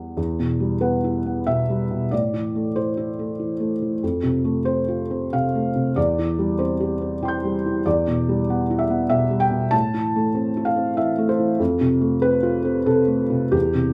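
A rough home-demo sound steeped in wet studio reverb frames this melancholic, wistful neoclassical minimalist piano piece in E phrygian, a rubato 3/4 at 95 BPM, where a solo felt-muted upright piano sits up front, soft, mellow and intimate with thick felt and audible action noise, spanning E2 to G6 over chords that move from Em to Am, F and C/E and back through Em, Am and F in a 13.9-second fragment cut from a longer piece.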